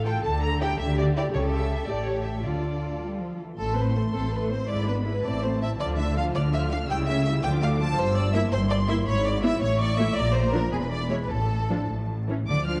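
In a 6/8 at 108 dotted-quarter beats per minute, with a flexible, rubato feel, this quick classical-period movement for string orchestra opens a stormy, dramatic excerpt cut from a longer piece. It begins in D minor and shifts to A minor at 3.6 s, where a longer second section unfolds through tense chromatic harmonies before settling on an A chord. A lush symphonic violin section carries the high melody with smooth, even vibrato, set back at a distance. A close, up-front studio violin section enters at 0.1 s with a second line in a lower register. Beneath them, the violas supply expressive accompaniment with a soft attack and sliding portamento, the cellos give a warm, close bass, and the distant double basses add a deep, rich foundation. A moderate concert hall reverb, a dark production and a vinyl crackle lend the whole a shadowy, antique cast.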